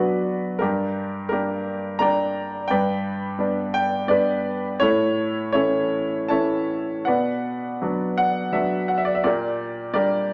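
A clear, up-front grand piano plays alone through this sunny, relaxed classical passage, cut from a longer piece, moving in an unhurried, rubato triple metre over chords that drift from B minor through G and A, with a moderate studio reverb that keeps the instrument present.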